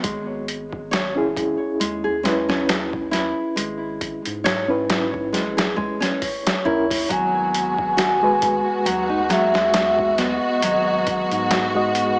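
Through a small-speaker sound bathed in lush hall reverb, this melancholic, hypnotic trip hop excerpt at 68 BPM in G# minor rides gritty, pitched-down boom bap drums and a deep, round analog bass, with a full-bodied nylon-string guitar playing arpeggios through tape echo and an overdriven, reedy electric piano with fast tremolo joining at 1.2 s, before a pure, breathy sine lead carries the melody from 6.2 s and a clear, distant symphonic string section holds sustained chords from 7.1 s.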